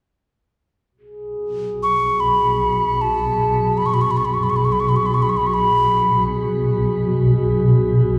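A worn, warbling cassette sound with drifting pitch wraps this short excerpt from a longer piece in a wet, studio-style reverb, setting a haunting, meditative world mood in free time. A glassy, ethereal glass harmonica enters on a slow attack from 1.0 s, and a cloudy, evolving granular pad drone follows in the low register from 1.6 s. Up front, a breathy, clay-toned alto ocarina carries the melody with vibrato and tongued notes between 1.8 and 6.2 s, haloed by shimmer reverb.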